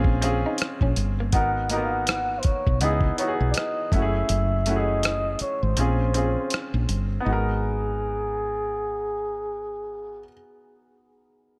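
A veiled, breathy trumpet with a bucket mute carries a whispered, jazz-style solo melody with vibrato from 1.3 seconds in this introspective, late-night neo-soul R&B excerpt at 81 BPM, set over minor ninth chords in a swung sixteenth feel; beneath it sit an up-front, clear upright piano with audible action noise, a round, woody fretless electric bass, a gritty, compressed sampler-style kit of hi-hat, thumpy kick and rim click whose kick drops out from 4.3 to 7.3 seconds, and a slightly broken-up, lo-fi picked guitar line heard briefly in the background at the start, the whole wrapped in digital ambience.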